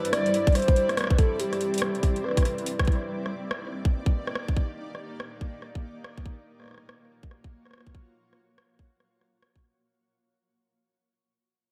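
A warbling, nostalgic lead with chorus, tremolo, dub echo and shimmer reverb opens this cerebral, eerie IDM fragment over a cloudy, blurred granular pad and an analog drum machine's metallic hi-hats and rim clicks; the lead stops at 2.9 seconds as the chords move from Cmaj7 through D#maj7 to F#maj7. A tight, up-front electronic kick enters at 0.5 seconds, anchoring the swung 16th-note feel at 142 BPM, while the pad's shimmer reverb and the drum machine's analog delay melt into an echo-heavy spring-reverb space. The passage fades out across its whole length, cut from a longer piece.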